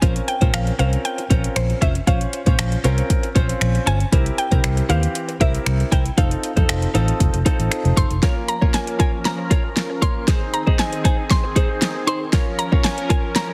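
A straight 4/4 pulse from a deep house drum kit, with its deep kick, fat snare, metallic hi-hats and finger snaps sitting up front, drives this energetic, bittersweet dance-pop passage cut from a longer piece. A woody, bright FM synth pluck with a fast attack and short decay carries the melody, dressed in chorus and digital delay, while a clean, direct-recorded electric guitar plays a picked, compressed riff through analog chorus. Underneath, an intimate concert grand piano with audible action noise and long sustain supplies the accompaniment, pumping with sidechain compression, and a dark, foam-muted fingered bass adds a round, pumping low end until 8.2 s. From that point a build-up with a drum fill runs to 13.5 s, as a detuned, soft-attack supersaw swell with a warm filter sweep enters on sustained chords, its unison sawtooth sound also pumping. The harmony moves from Bbmadd9 through C7 and F7 before settling between Bbm and Ab, all set in light reverb and a heavily compressed, radio-style mix.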